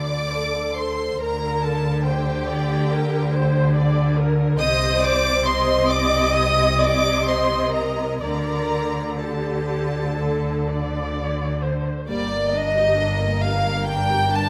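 Classical slow romantic string-orchestra movement, elegiac and yearning with a rubato feel, in which a softly attacked, lightly vibrato violin section carries the melody over a sul tasto second violin line, an expressive viola accompaniment with a smooth top, a distant-sounding cello section and a rich, even double bass section, all bowed with intimate chamber detail in a moderate recital-hall reverb, the excerpt cut from a longer piece.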